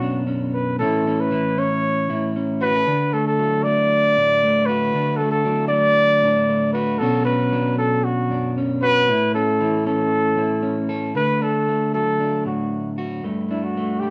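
A lightly swung 4/4 groove at 116 BPM carries this sunny highlife excerpt in D major, tuned a little flat of standard pitch, with the band playing live together in one room under a lush studio reverb. Up front, a breathy, dark-toned trumpet sings the solo melody in a jazz style, scooping into its notes with a smooth top end, while an electric guitar on the edge of break-up picks a slightly gritty accompaniment coloured by spring reverb. The music moves through Bm(add9), A and D for its opening 11.2 seconds, then shifts into a new section that ends on a suspended G chord as the piece is cut at 14.1 seconds.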